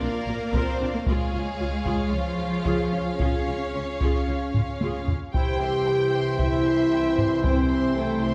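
Cinematic, epic orchestral film score in a triumphant, heroic mood, cut from a longer piece, where lush bowed violins carry the melody and a higher second line over a viola accompaniment in the background, while a dark cello section and woody double basses anchor the bass and a distant, roomy French horn section holds soft-attacked chords. Close, heavy-stick taiko drums enter at 0.5 seconds and drive a fill from 4.5 seconds, until a very quiet trombone section and mellow trumpet stabs join at 5.3 seconds as the harmony moves to C. The whole ensemble sits further back in a wet scoring-stage reverb.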